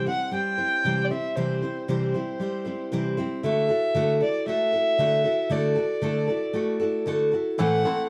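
Melancholic and intimate, this short cut from a longer piece is acoustic folk for a duo or small band, moving at 116 BPM in a straight 4/4. A dark, woody fiddle carries the melody up front, bowed by a single player with light vibrato and a smooth top, staying between C5 and G5. Beside it, a picked steel-string dreadnought guitar gives full-bodied, up-front accompaniment, ranging from A2 to C5 through chords of C and Dadd9 before settling on Am at 7.6 seconds. At that same moment a bright, twangy bluegrass banjo slips in quietly with percussive fingerpicked arpeggios for the final half second. The players sound as if they share one room, with a moderate studio ambience around them.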